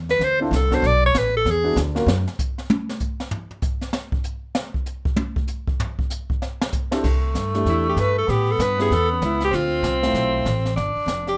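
A brisk swing at 193 BPM in 4/4 drives this sophisticated small-group jazz fragment, with a brushed drum kit of dark cymbals, high-tuned snare and boomy kick running throughout and taking a solo from 2.1 seconds. A woody, thumpy upright bass with gut strings and an intimate grand piano with audible action noise frame a clear alto saxophone, its vibrato, subtone and scooped notes bathed in plate reverb, before the music settles into C major at 7.0 seconds. There a roomy tenor saxophone with light vibrato joins as a second line beneath the alto, within a light reverb.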